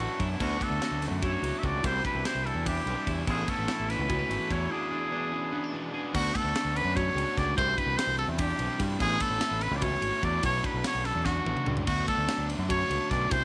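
Wistful yet playful, this math rock and midwest emo excerpt moves at a brisk 293 BPM in 7/8, cut from a longer piece. A clear, punchy trumpet with light vibrato and slapback echo carries the melody up front throughout, while a ringing stainless-steel handpan plays meditative arpeggios beneath it. A twangy, clean electric guitar with analog chorus supports the opening section until 6.1 seconds, alongside a double-tracked, crunchy overdriven guitar riff that sits in the background. A growling fingered bass with overdrive anchors the low end, and a crisp, polished fusion kit with a high-tuned snare and punchy kick drives the groove, with a break before the second section and a drum fill at 11.3 seconds. The harmony cycles through Dmaj7, Cadd9 and A, turning to E7 and later Bmadd9, all set in light reverb with a small room ambience.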